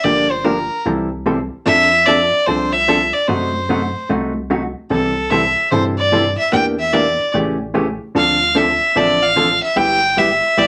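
A small, reverberant room gives this short western swing cut from a longer piece a snug, down-home feel, with the fiddle and guitar sitting up front. At 148 BPM in 4/4 with a swung eighth-note lilt in C major, the mood is cheerful. A single bowed fiddle, close and up front, carries the melody between A4 and G5, its gut-string tone rich, nasal and reedy. Beneath it, a clean, compressed hollow-body electric guitar, played with the fingers, supplies a dark accompaniment through a jazzy progression that moves from Gm7 and C6 through F#dim7 and Em7b5 to A7, Dm7 and a closing G6. Deep in the mix, a sine-based sub bass adds sustained low notes with a quick, punchy attack that drops in pitch. All three parts play together for the full 10.7 seconds.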